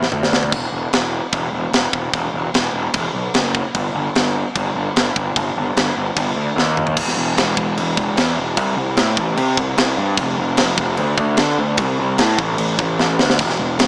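Epic and relentless, this short heavy metal cut from a longer piece drives ahead at 149 BPM in a straight 4/4, rooted in E phrygian. A fuzz-laden electric bass, picked and overdriven, carries the low end with a growly, bright tone that sits up front, ranging from E1 to D3. A tight metal drum kit plays throughout, its acoustic sound airy and polished, with a high-tuned snare, a tight kick, toms, and bright crash and splash cymbals. Drum fills mark the opening, the turn into the second section near 7.0 seconds, and a final flourish around 13.0 seconds. The whole is dressed in light reverb, yet it carries the character of a small speaker.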